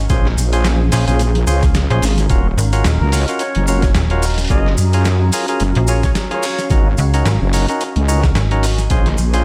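A gritty, tape-warmed glitch hop cut at 109 BPM with a swung 16th feel, playful and funky, built on a heavy chorused wobble bass and a snappy, metallic FM slap bass up front, a thumpy pitched-down electronic kick and boom bap sampler-style kit of hi-hat and snare, distant grainy maracas, key-clicking tonewheel organ stabs roughened by overdrive, 12-bit sampler crunch, analog delay and sidechain pumping, and a breathy chorused pad pumping in the background, while a mellow trumpet with light vibrato and analog delay sings softly from 3.0 to 6.7 seconds over a Bbm7, Ebm7, Gbmaj7 progression in light reverb.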